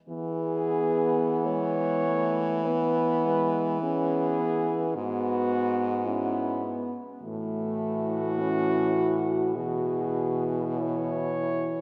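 Classical and lyrical, this tender excerpt for horn quartet moves in a slow, rubato 4/4 in E major, drifting between 41 and 54 BPM. A dark, punchy French horn carries the melody up front, a mellow horn sings the second line from the background, and a distant, roomy third horn with light vibrato fills in the accompaniment, while a clear, soft-attacked horn anchors the bass. A long church reverb of 3.6 seconds wraps the dark production as the harmony passes from E through E69/G# and F#m7/A to E/B, ending at 11.8 seconds.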